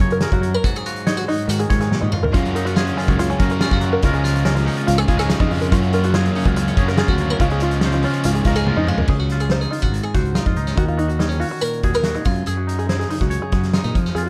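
Math rock meets midwest emo in this playful, bright excerpt at 142 BPM in Gb major, where a clean, twangy electric guitar and a plunky, fingerpicked open-back banjo weave chords and arpeggios over a growly fuzz bass and a loose, roomy indie drum kit with a fat snare, punchy kick and dark cymbals. From 2.3 to 9.1 seconds, a double-tracked, overdriven stack guitar adds a bright riff, framed by drum fills at 1.9 and 8.7 seconds. The harmony then turns toward Dbmaj9, Ebm7 and Gbsus2 in the closing stretch, all set in a dark production with light reverb.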